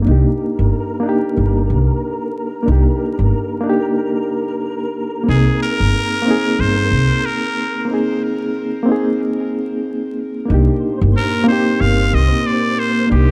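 A swung trip hop groove at 92 BPM in 4/4 sets a brooding, cinematic mood in C minor, opening this short cut from a longer piece. A woody, pizzicato upright bass sits up front from the start alongside a reedy electric piano whose clean tone shimmers with fast tremolo and tape echo over a rootless Cm9 before moving to Abadd9. A faint, flickering granular texture drifts in at 0.5 seconds, grainy and softly reverberant. At 5.3 seconds a close-miked trumpet with straight mute takes the solo, nasal and raspy with light vibrato, scooped notes and a growling jazz edge, its line trailed by tape echo through a break. At 10.5 seconds a deep, detuned analog pad with slow attack and chorus settles underneath as the harmony returns to Cm9, all wrapped in a dark production with small-room ambience and vinyl crackle.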